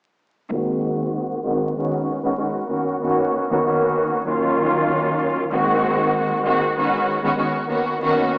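A lush, woody bowed string section with vibrato and a smooth top sits up front through a low-pass filter sweep from 0.5 to 8.4 seconds, carrying dark, reflective chords of Ab7, Db7sus4, Bmaj7 and Ebm7 in this short hip hop excerpt at 96 BPM with a light swing, all set in a moderate echo chamber and colored by worn, warbling cassette tape, vinyl crackle, drifting pitch and a small-speaker sound.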